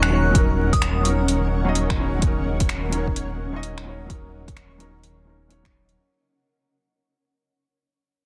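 Future garage in Eb minor at 128 BPM with a swung 16th feel, this melancholic, rainy fragment rests on an Ebm7 chord, where a glassy FM bell with chorus and tremolo rings briefly in the background until 1.1 seconds over a soft, felt-muted upright piano with audible action noise, a cloudy granular pad and a deep, rumbling detuned saw bass, all three pumping to the sidechain, while overdriven deep house drums with metallic hats and finger snaps and an overdriven electronic kick from 0.3 seconds sit in a large room, a reversed, dreamy texture drifts in at 0.8 seconds, and vinyl crackle colours the dense, heavily limited master as the whole fragment fades out.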